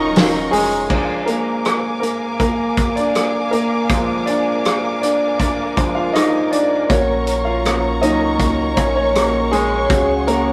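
A clear concert grand piano, lush bowed strings with expressive vibrato and portamento, fingerpicked nylon-string guitar with digital delay and a thick, deep sub bass open this heartbroken, longing pop ballad excerpt at 80 BPM on Ebm7 before a loose indie drum kit with a fat snare, punchy kick and dark cymbals joins at 0.2 s. From 0.9 s the piano takes a solo over Bb7 as the bass drops out, with the guitar following at 1.4 s, until both return at 6.9 s as the harmony moves through Gb/Bb to Dbsus4, captured in a rough rehearsal-room recording with warm saturation and a wet stone room reverb.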